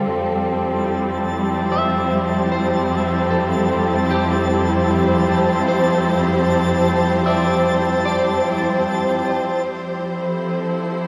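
This luminous ambient passage, cut from a longer piece, opens on a lush symphonic string section holding an Fmaj7 chord up front, its bowed ensemble sound expressive with vibrato and portamento, while a reedy, breathing hand-pumped harmonium drones mellow and vintage in the background. At 0.9 seconds a twinkling granular texture fades in high above, a bright, sparkling FM layer with an octave-up shimmer, slow attack and long release, carrying its own reverb. From 1.7 seconds a dark, slightly broken-up electric guitar plays picked arpeggios in the background through phaser and tape echo, dropping out at 9.9 seconds. The music moves at a gentle 75 BPM in 3/4 with a straight feel in F major, tuned slightly below standard pitch. The whole recording sits in a vast, wet reverb with a decay of 8.1 seconds and carries a cassette tape character that adds to its warm glow.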